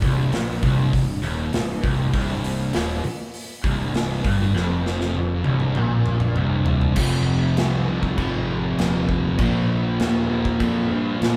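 Set at 99 BPM in a straight 4/4, this stoner and doom metal passage in C minor moves with a hypnotic, heavy tread, cut from a longer piece. Three guitars carry the riff together from the start: a warm thick fuzz guitar with distortion, joined by a compressed fuzz guitar with distortion and a bright, double-tracked, crunchy overdriven guitar that both sit farther back, all picked and spanning C2 to Bb3. Beneath them, a growly fingered electric bass, fed both direct and through an amp with overdrive, rumbles in the background from C1 to Bb2. The big rock drum kit is up front, with a punchy kick, a medium-tuned snare, bright cymbals, hi-hat and toms ringing in a big room. A drum fill runs from 4.6 to 7.0 seconds, and the harmony moves from C minor to F minor at 7.0 seconds, then to a Bb power chord at 9.4 seconds. The band sounds as if playing live in one room, with light reverb.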